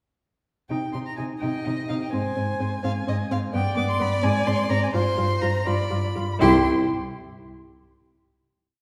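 Restless and dramatic, this quick classical-period movement for string quartet unfolds in 6/8 with rubato, heard from further back in a wet scoring-stage reverb. A rich, smooth first violin carries the melody with even vibrato from 0.7 s, while a close-sounding second violin enters at 1.4 s with an expressive, soft-attacked counter-melody and sustained chords, sliding with portamento; a dark, woody viola supplies repeated notes and held chords. The cello sits up front with a warm tone, laying down repeated and sustained bass notes with expressive portamento, before the quartet arrives on a final chord at 6.4 s.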